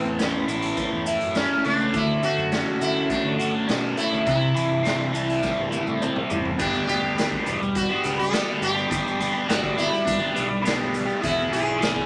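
Psychedelic rock at 103 BPM in a straight 4/4, hypnotic and trippy, with a biting overdriven guitar riff, double-tracked and up front through a phaser, beside a buzzing, shimmering sitar melody full of sympathetic-string ring. Underneath sit a round, fuzzed fingered bass, a very quiet reedy combo organ holding sustained chords with light vibrato, grainy maracas in the background, and a raw garage drum kit that sounds distant and roomy with dark cymbals and a punchy kick. Chords move from A through Dmaj7 and C6 to G and Eadd9, and a drum fill from 5.4 to 6.6 seconds leads into the second section of this fragment cut from a longer piece.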